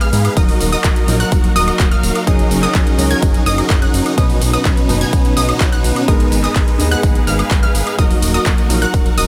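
A straight 4/4 pulse at 126 BPM drives this powerful, anthemic festival progressive house excerpt in Eb minor, tuned to A4 = 436 Hz, with a punchy, overdriven electronic kick up front from 0.4 s and an overdriven big-room dance kit of handclaps, metallic hi-hats, ride cymbal, tambourine and woodblock. A huge, thick, detuned supersaw riff with delay leads over a fat analog bass that enters at 0.1 s. A lush unison pluck spins high arpeggios with delay, while a baby grand piano and earthy chamber strings with light vibrato sit in the background, and all five of these pitched parts pump to the sidechain as the chords move from Ebm through Gb6, Badd9 and Abm and back to Ebm in a dry mix.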